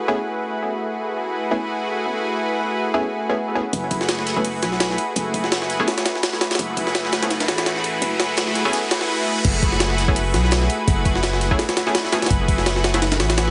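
A lush, detuned sawtooth pad with chorus opens this dark, frenetic drum and bass and jungle excerpt on a sustained F#m11 chord, with a nasal, band-passed stab sitting in the background under a dub echo. At 3.7 seconds a deep, decaying 808-style sine bass arrives with gritty, overdriven sampler-style jungle drums up front, a thumpy kick and high-tuned snare, with a very quiet big-room acoustic kit beneath. A faint electronic riser builds from 6.2 seconds into the drop at 9.4 seconds, all under a heavily compressed, radio-like sound with light reverb.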